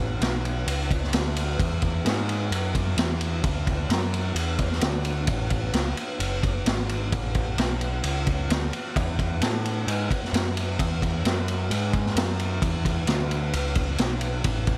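A growling, picked electric bass opens this swaggering, gritty blues rock and southern rock excerpt, with the vintage drum kit joining at 0.2 seconds. The tempo sits at 131 BPM in a straight 4/4 feel, in A major, with the bass ranging from F#1 to A2. Overdrive gives the bass a warm, punchy bite, its sound both direct and amped and placed up front. The acoustic kit of kick drum, snare and ride cymbal is saturated and mid-forward, with dark cymbals, a medium-tuned snare, a punchy kick and a rolled-off top end lending it a warm, gritty vintage character. The dry studio room keeps the power-trio rhythm section close and up front through the full 14.8 seconds.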